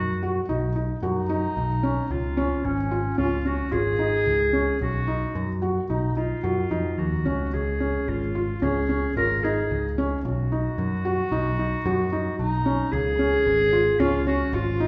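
Set in a straight, uneven 5/4, this playful, restless piece of contemporary chamber music sways between Cb and Db chords across its 14.9 seconds, cut from a longer work. A vintage-toned clarinet carries a second line in a classical style, while a felt-muted upright piano plays soft, intimate arpeggios with audible action noise and short sustain, and a picked electric bass sits up front with a direct, amped sound. A wet recital hall reverb places the listener further back in the room, and lossy compression artefacts colour the recording.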